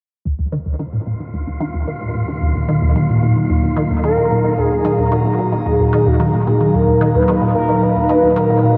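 Drenched in a vast, lingering reverb and the worn, warbling pitch drift of old cassette tape, this cosmic, mysterious stretch of sequencer-driven space music is cut from a longer piece. A squelchy, resonant blip pluck sits up front, playing a bright, phased riff with delay and a glistening shimmer tail, while a detuned sawtooth pad sweeps through sustained chords built on an Eb minor add9 harmony. Beneath them a very quiet analog drone fades in, and at 1.1 seconds a dark, airy, breathy, wind-like noise texture fades in higher up before dropping away at 4.6 seconds. A filter sweep moves across the sequenced sound through the opening section. From 4.0 seconds a smooth, mellow synth lead with vibrato and ensemble chorus carries an expressive melody into the second section, floating on delay and shimmer.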